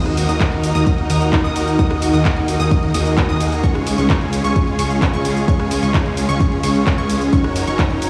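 Opening at once on a lush, chorused unison pad, detuned supersaw chords and a fat analog bass, all pumping against the sidechain, this uplifting, anthemic festival progressive house excerpt moves at 130 BPM in Db major through Ebm, Db and Gb6. A high, wave-folded pluck arpeggio and the huge, bright supersaw riff both trail tape echo, while the bass carries a filter sweep under the sustained pad, which sits in the background. A house kit with bright hats, claps, ride, rim click and shaker enters at 0.1 seconds and a punchy, up-front kick at 0.4 seconds, with the whole mix sounding as if played on a big system in a bare stone room.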